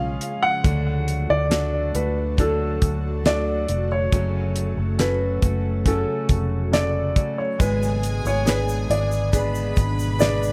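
A dark, mellow grand piano carries the melody up front, its smooth, vintage tone touched by delay and audible action noise, in this melancholic, emotional pop ballad excerpt at 69 BPM in 4/4 with a straight feel, set in F# harmonic minor. Beneath it, a second, clear concert grand with a worn, intimate character and deep bass plays the accompaniment, while a fingerpicked jumbo steel-string acoustic guitar adds full-bodied arpeggios in the background and an ethereal pad of detuned sawtooth and triangle tones holds sustained chords through ensemble chorus and built-in reverb. A damped 70s drum kit enters at 0.2 seconds, dry and up front with a fat snare, tight kick, hi-hat and a rolled-off top, over a round, foam-muted fingered electric bass with an amped, vintage edge that has played from the start. At 7.6 seconds a clear studio violin section arrives with a bowed second line and light vibrato, alongside a grainy egg shaker that sounds distant, as if in a large room. 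The harmony moves from C# through D and F# minor to G# diminished, leaving the fragment unresolved within a studio ambience.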